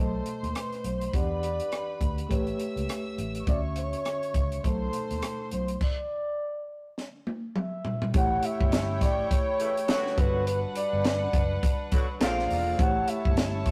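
Lush 1970s-style soul at 103 BPM with a swung sixteenth feel, in which a breathy, dark flugelhorn carries the smooth melody over gut-toned bowed strings, a reedy electric piano with light overdrive and fast tremolo, a round, foam-muted fingered bass and a dry, punchy cocktail drum kit up front, as the band halts at 5.8 seconds ahead of a drum fill at 7.0 seconds before distant, roomy horn stabs with octave doubling arrive at 9.6 seconds, all captured in a rough rehearsal-room recording with tube saturation and light reverb.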